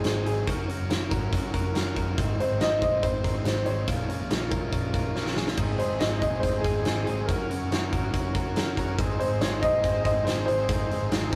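Bittersweet and restless, this short excerpt of jangly indie pop moves at 141 BPM in a straight 4/4, cycling through Gb, Ab and Bbm7 chords. A warm, woody upright piano carries the melody, its action noise audible and intimate, while a big, natural rock drum kit with bright cymbals, a medium-tuned snare and a tight kick drives the song up front. A biting overdriven guitar adds picked accompaniment through spring reverb, and a direct-recorded clean electric guitar plays compressed, bright arpeggios in the background. A vintage foam-muted picked bass sits low and round, entering at 0.1 seconds, and after a drum fill a reedy combo organ with light vibrato joins at 5.6 seconds. The whole thing has the rough, roomy feel of a rehearsal-room recording with moderate studio reverb.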